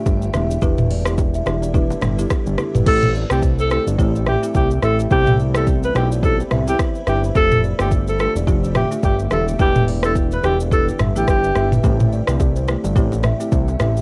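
Afrobeats with a hypnotic, mellow swing, where a breathy alto saxophone with tape echo and plate reverb carries the melody from 2.9 to 11.7 seconds over a buzzing, hollow-boxed kalimba riff, a woody folk marimba with a cassette tinge, a blurred granular cloud pad, a fat detuned sawtooth bass with a filter sweep, an electronic afro-pop kit with a deep kick and metallic hats, and very quiet ringing bongos and congas, all in a lightly reverberant home cassette recording with faint mains hum.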